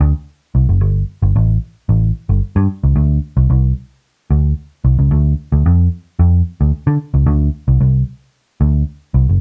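A vintage muted electric bass, picked and foam-muted, carries this driving, funky excerpt entirely on its own, its dark, round, amped tone sitting up front from the first beat. The part shifts into a new section at 3.0 seconds and runs until 9.4 seconds in straight 4/4. Light reverb barely touches the dry, close sound of a 1970s-style studio recording.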